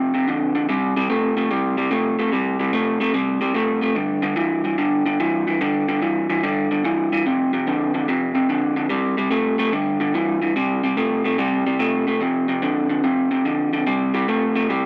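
Laid-back, gritty blues swinging at 146 BPM in C major, in which a lone picked electric guitar through a small old amp sits up front with a slightly broken-up, lo-fi tone, moving through F5, C5 and G5 chords in a moderate echo-chamber reverb before shifting to a new section at 10.6 s in this 14.9-second excerpt from a longer piece.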